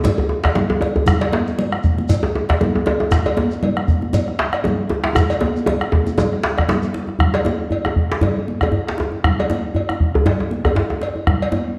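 A driving 4/4 groove at 118 BPM with a light 16th-note swing opens this earthy West African drum ensemble excerpt, where a round, up-front bombo and a tight, cracking djembe sit at the front, a second djembe sits in the background, bright high-tuned congas with hard hands and a metallic cowbell ride on top, a grainy shekere drops out at 6.9 seconds, and a drum fill from 5.2 to 7.2 seconds carries the music into a new section, all set in a wet recital-hall reverb with a dark, warm production.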